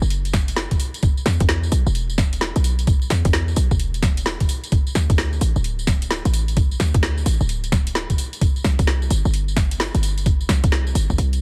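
A short, punchy 808-style bass with a tight sine body, a noise layer and fast attack sits up front from the start, alongside an electronic garage kit of woody snare, metallic hats and tambourine, swung into a bouncy, late-night two-step groove. At 0.3 seconds a gritty, thumpy, pitched-down kick with a tape-warm, compressed, sampler-style sound arrives up front, all in a dry, dense, heavily limited mix flecked with vinyl crackle, cut from a longer UK garage piece.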